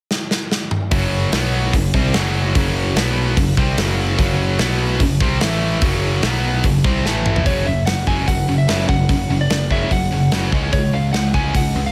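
Driving and heavy, this hard rock excerpt in F# minor runs at 147 BPM, opening with a drum fill on a big, up-front acoustic kit with a tight kick and medium-tuned snare before two bright, distorted picked guitars and a round, fuzzy overdriven bass enter at 0.9 seconds on a riff moving between F#5, B5 and A5 power chords. After a second fill, a lightly driven, slightly broken-up lead guitar takes the melody from 7.5 seconds, compressed and picked high above the riff. The rhythm guitars sit in the background of a small room ambience while the drums push forward.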